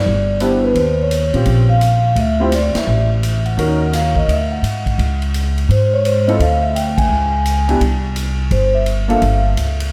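Up front in the mix, a woody pizzicato upright bass drives this warm, sophisticated small-group swing excerpt, joined by a punchy, natural big-room drum kit on ride, hi-hat, snare and kick. A mellow vibraphone with soft mallets and tape echo carries the ringing, metallic melody, while a clear grand piano with analog chorus and long sustain comps through lush harmonies such as Cmaj9, Eb13 and Dbmaj7(no3). The band hits accents together at 2.7 and 6.9 seconds, and a dreamy hall reverb soaks the whole mix.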